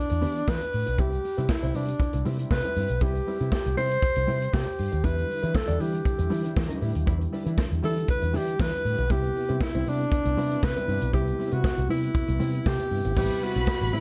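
A breathy, close-miked alto saxophone opens this sultry, danceable disco excerpt with a jazz-style subtone and analog delay, joined at once by a dark, clean, fingered electric guitar, a picked bass through an envelope filter and a punchy vintage drum kit with a rolled-off top, while a round tonewheel organ with chorus vibrato and slow rotary speaker settles in behind at 5.0 seconds, and a lush bowed string section and jingly tambourine arrive at 13.2 and 13.4 seconds in a warm, lightly reverberant production.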